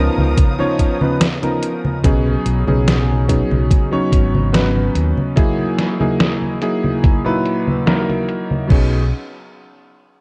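This vaporwave excerpt opens with an electric grand piano, a dark string section and an overdriven electric bass together on a C#13 chord, setting a nostalgic, dreamy mood at 72 BPM in 4/4 and B major. The bowed strings, woody with vibrato and a smooth top, hold sustained chords only until 2.0 seconds, as the harmony settles on B69 before moving to Emaj9#11 and returning to B69. The vintage piano sits up front with a clangy low end and long sustain, its chords bathed in lush chorus and analog delay, while the punchy, amped bass stays close and prominent underneath. A detuned 8-bit drum machine supplies congas, hi-hat, a medium-tuned snare and crash cymbal, each dulled by low-pass filtering, and a thumpy electronic kick sits firmly beneath them. Both drum parts carry a tape-tinged, sampler-style character and the sound of a large room, and the whole production is dark and cassette-worn, with light reverb and digital ambience.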